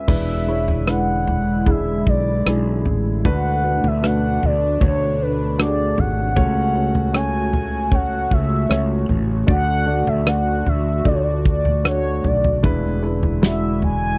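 A heartbroken, melancholic pop ballad in a straight 4/4, cut from a longer piece, where a round, horn-like synth lead with soft attack and vibrato carries the melody up front through chorus, phaser and slapback echo. Beneath it, a felt-muted upright piano plays intimate accompaniment, a breathy, detuned pad holds sustained chords in the background, and a growly, punchy fretless bass sits forward alongside a loose, small-room drum kit with tight kick, rim clicks, toms and crash. The dry, close sound recalls a 1970s studio, and the harmony moves from E7 through Bm7/D, F#m/C# and D before returning to E7 at 12.6 seconds.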